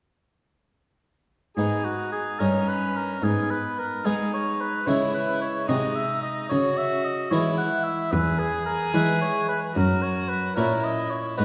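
Solemn and introspective, this baroque-style sonata movement with continuo moves in G# minor at 74 BPM in a straight 6/8, with violin, oboe, harpsichord and cello all entering together at 1.6 s, cut from a longer piece. The oboe sits up front with a warm, lightly vibrato second line, while the violin carries the melody in a low register with a gut-string, reedy period tone and light vibrato. A round, plucked Flemish-style harpsichord and a rich, bowed cello supply the accompaniment and bass through a wet recital hall reverb heard from further back in the room, the harmony moving from G#m through C#m to E and ending on F#7.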